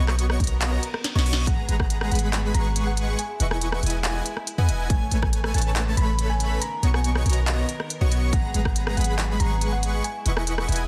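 A thick, detuned supersaw riff, a deep, boomy 808-style bass, a bright bowed string section holding lush chords and a dreamy arpeggiated lead with chorus all pump together from the start of this emotional, bittersweet future bass excerpt in G# minor at 140 BPM with a half-time feel, moving through Bmaj7, G#m7, Emaj7 and Amaj7. A trap kit with a sharp snare and crisp hats, along with a hard-clipped electronic kick up front, drives the groove, while a reverse cymbal and a drum fill lead into 1.5 s. At that point a round, tine-like thumb-piano-style pluck with chorus and delay enters in the background, and the whole track sits in a digital ambience with a dense, heavily limited modern master.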